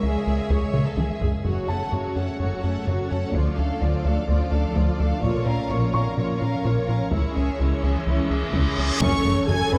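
A straight 4/4 pulse at 127 BPM drives this brooding, futuristic hybrid orchestral and electronic film cue in F# minor, where a rubbery, nasal square-wave bass riff sits up front over a bright, organ-like pad with ensemble chorus, warm bowed second violins, lush violas, very quiet cellos and woody double basses, a dark baby grand piano with tape echo in the background, and background taiko drums that fill at 0.7 seconds, drop out, then return at 5.2 seconds before an electronic reverse cymbal leads into an impact at 9.0 seconds, where the expressive studio violin melody returns and a distant, roomy French horn section enters with sustained chords.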